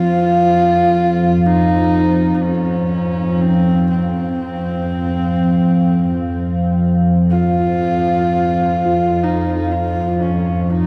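A husky, earthy horsehead fiddle sits up front in this ominous, cavernous dark ambient drone at 62 BPM. It carries the melody with light vibrato and portamento through a diffuse ambient delay, over a deep, moody, detuned pad with chorus and a tense, string-like bowed drone on F2 that undergoes a filter sweep. From 1.4 s a very quiet bronze singing bowl adds ringing, metallic arpeggios with slow beating, all set in a dark production with a cathedral reverb whose tail lasts 6.2 seconds.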